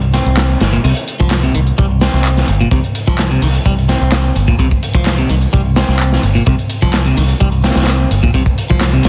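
Breakbeat at 128 BPM in a straight 4/4, this gritty, energetic clip is driven by a crunchy, saturated breakbeat kit with tight kick and medium-tuned snare sitting up front, an overdriven analog drum machine adding handclaps, hi-hat and ride cymbal, a picked electric bass rumbling between G1 and C2, and a bright, twangy clean electric guitar riff coated in tape echo, all under studio reverb in a dense, heavily limited master flecked with vinyl crackle.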